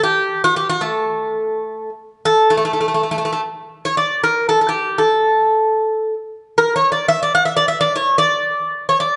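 A dark, warm recording set in a recital hall with a moderate reverb tail of 1.7 s gives this brief fragment of Turkish makam ensemble music a stately yet passionate air. A solo acoustic Greek bouzouki sits up front throughout its 9.2 s, its picked, metallic double strings, some doubled at the octave, ringing out as the opening phrase is stated and then returns at 3.6 s.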